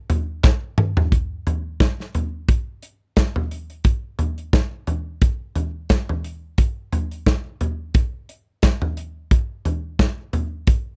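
A lightly swung 16th-note groove in 4/4 drives this bittersweet, dramatic pop excerpt, where an up-front acoustic drum kit with a punchy kick, medium-tuned snare, hi-hat and toms plays a fill from 0.4 to 1.1 seconds, joined briefly at 0.4 seconds by a crisp group handclap in the background, all captured in a dry, close 1970s-style studio sound with a small-room feel on the drums.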